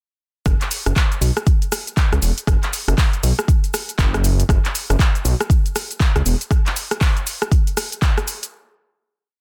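A dark, detuned saw bass rumbles up front with a syncopated riff between E1 and C#2, its sidechain pumping giving this earthy, driving afro house piece at 119 BPM a beating, sawtooth edge that drops out at 6.4 seconds. Alongside it, a deep electronic kick holds four-on-the-floor up front while an afro-pop kit of cabasa, handclaps, metallic hi-hats and rim clicks carries a programmed backbeat with a 60% swing on the sixteenths. The whole piece is a single drop from 0.5 to 8.5 seconds, dry and dense with a heavily limited modern master.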